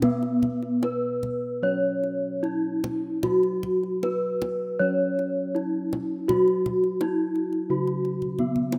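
Javanese gamelan at 75-90 BPM in a straight 4/4 with a ceremonial mood, led by a dark, smooth bronze metallophone melody up front that rings under a wooden mallet with the shimmering beats of paired tuning, a quieter metallic metallophone accompaniment beneath it, soft, mellow bossed gongs with round, beating tones from padded beaters carrying the bass, and a tight, close, dry kendang whose hard-handed fill closes the passage at 8.2 seconds, heard through a moderate plate reverb in a rough home demo mix.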